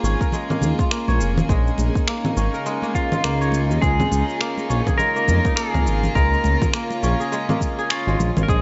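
A smooth, gliding synth bass sits up front with detuned sawtooth and square-wave tones and a sidechain pump, anchoring this hypnotic organic downtempo excerpt as it moves from Bbm7 to Db69 at 3.8 seconds. Around it, a crisp, ringing kora plays fingerpicked arpeggios through delay and shimmer reverb, while a rich, floating bowed string section holds soft-attack chords that also pump. A deep, tape-toned electronic kick, an electronic shaker, congas and finger snaps drive a swung groove, hard-hand acoustic congas sit close and dry in the background, and from 3.0 seconds a dark, clean lap steel guitar adds a slide melody with fingerpicks and volume swells, trailed by tape echo.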